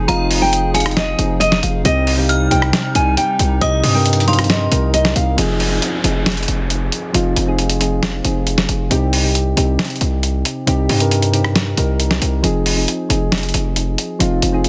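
A half-time trap groove of gritty, compressed sampler-style drums with hi-hat, rim click and snare drives this brooding, eerie hip hop excerpt, where a distorted, aggressive 808-style bass sits up front beneath soft, round electric-piano-like synth keys with chorus, while a full-bodied fingerpicked nylon-string guitar melody with finger squeak and a hollow, flute-like pad in the background drop out at 5.4 seconds, the metallic, inharmonic FM bell with tape echo having ended at 4.9 seconds, and an electronic downlifter then enters over the continuing drums, bass and keys on a dense, heavily limited master.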